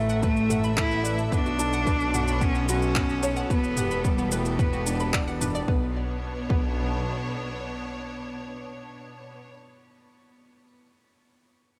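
A straight 4/4 pulse at 110 BPM drives this cinematic, moving piano and strings electronica in B minor, with a deep, tape-kissed electronic kick and a layered deep house kit of handclaps, shaker and toms in small room ambience, while a double bass section pumps a distant, bowed low end. Over lush, close string chords pumping with sidechain and shimmer reverb, an intense, up-front solo cello sings the melody through delay until 5.1 seconds, and a felt-muted upright piano plays a soft, intimate riff with audible action noise that carries on to 11.8 seconds. A bright analog pluck with chorus and delay adds arpeggios in the background, as the harmony moves from Asus4 through Bmadd9 to Em7 in this cut from a longer piece.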